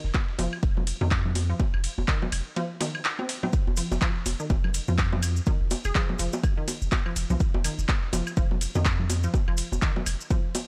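Hypnotic and quirky, this minimal techno cut from a longer piece rides a swung 124 BPM groove in F minor, built on an up-front, tape-warm electronic kick, a deep sine sub bass with a pitch-drop attack and sidechain pumping, a booming analog drum machine with metallic hats, handclaps and ride re-recorded in a large room, and a very quiet, overdriven sampler-style kit adding snare and ride. Bongos, woodblock and congas pass through analog delay, grainy maracas join in the background at 3.5 seconds, and a squelchy, detuned resonant blip pluck repeats a bright riff with chorus and tape echo. A hollow square pluck flickers a single Ab4 note at 5.8 seconds, and the whole piece sits in a digital ambience with a dry, gritty hardware character.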